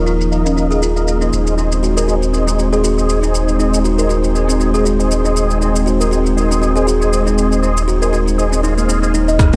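A buzzing kalimba leads this earthy afro house excerpt at 119 BPM, its woody, ringing arpeggios plucked close and bright, pumping with the sidechain and trailing dub echoes over a 16th-note swing. Beneath it, a detuned sawtooth pad holds mellow sustained chords with chorus, moving from Ebsus2 to Ab/Eb, while a round sine sub bass sits up front on a deep Eb1, both breathing with the same pumping. A tonewheel organ adds smooth, clean stabs through a slow rotary speaker with chorus vibrato, a low-pass filter and dub echo, dropping out at 9.1 seconds. A deep house kit stays low in the mix from 0.1 seconds, its metallic hats, rim click, shaker and toms softened by low-pass filters and set in a small room with echo. Near the close, a tape-toned electronic kick lands loud and deep at 9.4 seconds, capping a lightly reverberant, echo-soaked mix.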